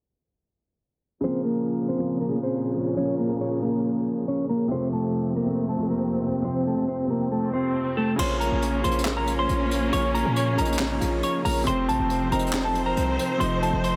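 A mellow, clean electric guitar carries the melody from 1.2 seconds through tape echo and a low-pass filter, over an intimate concert grand piano with audible action noise and lush, bowed symphonic strings, while a filter sweep shapes this opening stretch of a melancholic trap excerpt in Bb harmonic minor at 138 BPM with a half-time feel. At 8.2 seconds a punchy, heavy 808-style bass arrives up front alongside a jazz brush kit of dark cymbals, high-tuned snare, hi-hat, handclaps and crash, giving the music a hard-hitting edge. The chords alternate between Bbm and F under light reverb and a dense, heavily limited modern master.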